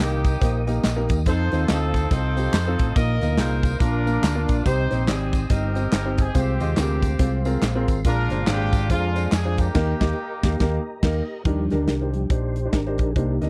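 Hopeful and uplifting, this short cut from a longer uptempo gospel piece moves at 141 BPM in a swung 4/4 feel, set in Eb major. A clear, tight horn section carries the melody with light vibrato, sounding distant and roomy in a jazz style, while a polished grand piano supplies present, warm accompaniment and adds a brief fill near the start. Up front, a dark, round, punchy fingered electric bass sits alongside an airy studio drum kit with bright cymbals, a medium-tuned snare and a tight kick. Group handclaps and tambourine bring live-room texture until 9.7 s, when the band hits an accent, and the horns finish at 11.0 s. From 11.4 s the mellow, flute-like tonewheel organ, heard until then softly in the background through a slow rotary speaker with chorus vibrato, takes a short solo over an Ebmaj7 chord, all captured in a dry, close 1970s-style studio sound.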